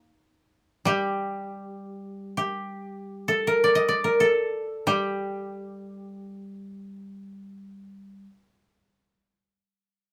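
A low koto opens this short cut from a longer piece of Japanese chamber music, plucked with fingerpicks in free time on the G hirajoshi scale, tuned to A4 = 441 Hz. At 0.9 seconds a second koto enters with the melody in a higher register, sitting clearly above the quieter accompaniment. Both instruments sound woody, dry and up front in a booth with moderate ambience, and the mood is austere and solitary, with the accompaniment stopping at 8.2 seconds and the melody carrying on alone until 9.4 seconds.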